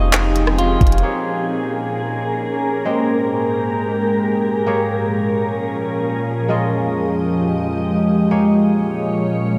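Drenched in cathedral reverb, this dreamy, melancholic cloud-rap fragment in free time and Bb dorian opens with a bright, very quiet concert harp, a clean semi-hollow electric guitar arpeggio washed in diffuse delay and a deep, boomy 808 bass, joined at 0.1 seconds by a soft, up-front R&B kit of kick, hi-hat, rim click and handclaps. All of these fall away by 1.4 seconds, leaving a glassy, ethereal FM pad with ensemble chorus and sidechain pumping to sustain Fm7, Bbm7 and Abmaj7 chords beside a crisp, ringing kora in the background until 9.6 seconds.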